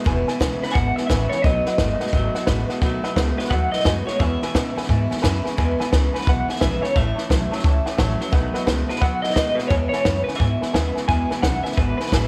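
A twangy, slightly broken-up electric guitar carries the melody through a small old amp, coloured with tremolo and tape echo, before a clean guitar solo enters at 11.1 seconds in this upbeat, rollicking, swung rockabilly excerpt. A second bright, lo-fi electric guitar picks a low riff over a punchy, up-front cocktail drum kit with a high-tuned snare and a woody, thumpy pizzicato upright bass on gut strings. Further back sit a full-bodied, fresh-stringed picked dreadnought acoustic with audible finger squeak and a detuned, jangly honky-tonk upright piano that adds fills at 4.5 and 7.6 seconds, all in a light small-room ambience.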